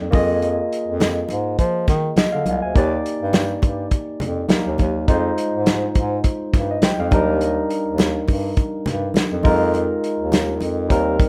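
A rough home demo with light reverb, this romantic slice of lush 1970s-style soul moves at 103 BPM with a gentle sixteenth-note swing in Eb major, as a barky, lightly overdriven tine electric piano through a combo amp carries the chords from Bb7sus4/F through Ebmaj7 and Fm7, a clear bass clarinet takes the low line with soft attacks, light vibrato and scooped notes, a tight, mid-forward acoustic soul kit with a rolled-off top sits up front, close, dry congas ring in the background, and a faint, jingly tambourine joins at 1.0 s.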